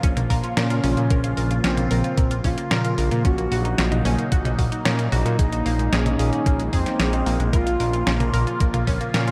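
Moody, nocturnal synthwave at 112 BPM in Bb minor, this excerpt sets a swirling, phased sawtooth pad and a round, nasal pluck arpeggio with diffuse delay over a fat, tube-saturated bass and an up-front 12-bit drum machine with a thumpy kick, both bass and pad pumping under sidechain, while from 0.6 seconds a smooth portamento lead with vibrato sings a mellow melody through light digital ambience as the chords move from Bbm through Ebm7/Bb and Absus2/Bb back to Bbm.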